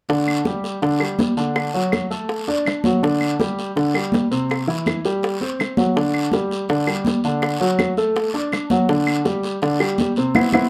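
Joyful and danceable, this brief salsa excerpt moves at 164 BPM in a straight 4/4, with a present, polished baby grand piano up front comping through chords that cycle between G5, D and C. Close, dry bongos struck with soft hands, distant high-tuned congas with a bright, thin skin, woody claves entering at 0.3 s, and a raspy, saturated guiro sit beneath the piano in a dark production with moderate studio reverb. The band hits a closing accent at 10.4 s before the clip ends.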